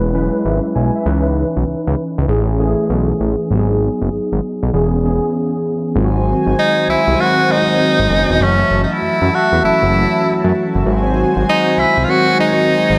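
An edgy tenor saxophone takes the solo at 6.6 seconds, its forceful, jazz-style line carrying vibrato and sitting up front, trailed by a diffuse ambient delay. This slick, confident R&B cut, taken from a longer piece, moves on a swung sixteenth-note feel in 4/4. A mellow tine electric piano with ensemble chorus and a fat, detuned sawtooth analog bass with a fast attack carry the opening section through chords such as E6, C#m9 and Amaj7, before a short break. At 6.0 seconds a shimmering, retro pulse-width pad with a slow attack enters just ahead of the saxophone, its evolving tone adding sustained chords as the harmony shifts between G#7 and F#m7. A moderate, lush hall reverb soaks the mix in a dreamy haze.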